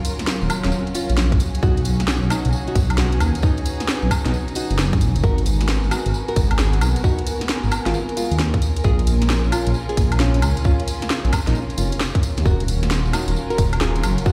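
UK garage in a two-step style at 133 BPM in Eb minor, this skippy, bouncy excerpt swings its sixteenths over a chord cycle of Ebm9, B69, Abm9 and Bbm7, with an overdriven electronic kick entering at 1.3 s up front alongside an overdriven garage kit of hi-hat, cracking snare and woodblock, plus a jingly, close tambourine. A rumbling, detuned sawtooth bass sits prominently underneath, while a bright, fingerpicked nylon-string guitar carries the melody through tape echo. Muted, veiled violins holding sustained chords and a moody, chorused ambient pad in the background both pump with the sidechain, all set in a large studio reverb as if heard on a big sound system in a bare room.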